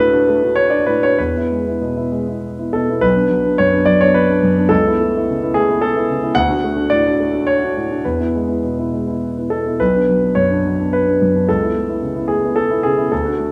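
In a rubato triple metre, this melancholic, wistful neoclassical minimalist piano excerpt features a solo concert grand, warm with a deep bass and short sustain, placed up front in a wet stone room as it circles through D, E, Bm and Aadd9/C# chords, with a new section arriving at 3.0 seconds and running to 13.5 seconds.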